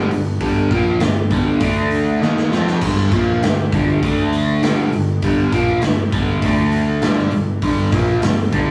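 A rough, tube-saturated rehearsal-room sound, with a short, wet booth ambience and a touch of studio reverb, frames this aggressive, menacing hard rock passage cut from a longer piece. Two picked electric guitars drive the riff from the first moment. A crunchy overdriven guitar sits up front with a phaser, alongside a brighter, compressed distorted guitar. Beneath them, a fuzzy, overdriven electric bass holds the low end from the background as the riff shifts back and forth between two chords. A big acoustic rock kit enters at 0.1 s, sitting up front with a punchy kick, medium-tuned snare, hi-hat and glittering crash cymbals, and it throws in a fill from 2.2 to 2.8 s.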